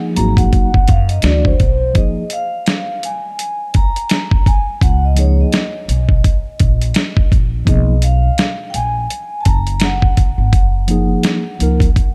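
A mellow, clean tine electric piano opens this relaxed, cool jazz-hop fragment at 84 BPM with a swung 16th-note feel, joined at 0.2 seconds by an airy, ringing soft-mallet vibraphone that carries the melody through tape echo and solos until 2.0 seconds, a woody pizzicato upright bass sitting up front, and a gritty, compressed sampler-style drum kit with overdrive, a thumpy kick, a medium-tuned snare and hi-hat, with a break from 2.0 to 4.8 seconds in a dark, dry production whose harmony moves from F#69 through Fmadd11 and A#madd11 to Bmaj7 and back to F#69.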